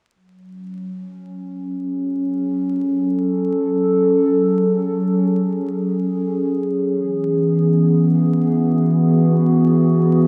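Hazy and meditative, this ambient excerpt in free time and F# minor sets a single warbly, tape-like pad with a nostalgic, lo-fi, dark tone up front, holding sustained chords with chorus and built-in reverb from 0.7 seconds, moving from F#m to E at 6.9 seconds and running to 10.3 seconds, all inside a wet echo chamber with vinyl crackle.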